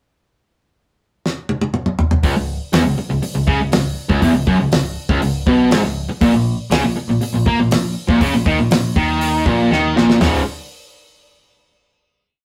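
A straight, driving 4/4 rock groove comes in at 1.3 seconds on a dry, damped 70s drum kit with a fat snare and tight kick sitting up front, and a drum fill leads into the riff at 2.2 seconds. From there a distorted electric guitar and a bright overdriven electric guitar each pick a single-note riff, while a picked electric bass drives eighth notes that double the guitar riff with a warm, amped tone. This gritty, whole classic rock piece has a rough rehearsal-room sound with modest small-room ambience, and another drum fill sets up a final chord at 10.2 seconds.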